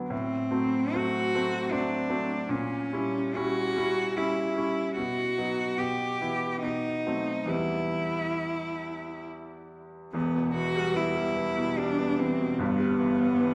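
A rubato waltz-time pulse sways through this romantic classical excerpt for cello and grand piano, yearning and elegiac in mood. The bowed cello carries the melody in a rich, smooth tone with even vibrato, sitting close and up front, while the bright grand piano accompanies with brilliant, long-sustaining chords, its action noise audible in an intimate, present sound. A wet concert-hall reverb surrounds both players as dark diminished harmonies settle onto E minor at 7.5 seconds, and a new section begins at 10.1 seconds.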